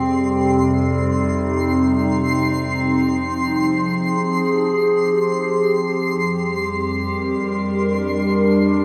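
Bathed in a huge, wet reverb, this serene, melancholic ambient fragment sets a warbling, nostalgic lo-fi pad up front, its detuned, mellow chords colored by chorus and phaser and drifting from Cm/F to Fm7 at 2.6 seconds and Gm7/F at 6.1 seconds, while a quieter, twinkling granular texture adds a bright, sparkling octave-up shimmer high above.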